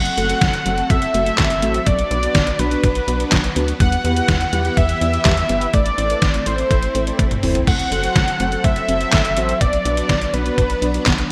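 A fat, nasal analog lead carries the melody up front with delay and vibrato, over shimmering vintage string-machine chords, a very quiet soft round pluck playing arpeggios and a rubbery, hollow square bass, all opening this driving, cool synth-pop passage at 124 BPM in straight 4/4. The detuned 8-bit drum machine enters at 0.1 s with a thumpy kick, handclaps, hi-hat, crash and toms treated with gated reverb, adding a drum fill at 7.2 s, while mellow, brassy synth brass with chorus fills in the harmony through a cycle of F#dim, Bm, Em and Am. A lush hall reverb and bright 1980s-style digital production frame this fragment cut from a longer piece.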